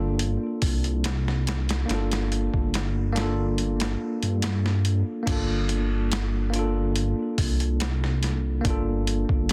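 Brooding and hypnotic, this trip hop fragment moves at 71 BPM in a straight 4/4 feel in G minor, resting on a Gm9 chord from the start. A dark, detuned saw bass sits up front from 0.0 seconds, its deep, rumbling tone beating and saturated, with a fast attack and sustained notes in the low register. Alongside it, a bell-like tine electric piano plays accompaniment in a bright, clean voice, coloured by harmonic tremolo and tape echo. A boom bap sampler-style drum kit enters at 0.2 seconds with a gritty, pitched-down character, pairing a thumpy kick and medium-tuned snare with hi-hat and crash cymbal, and the kick drops out between 3.6 and 5.3 seconds before a new section begins. Light reverb and digital ambience surround the parts, and the mix is dense and heavily limited in a modern style, cut from a longer piece.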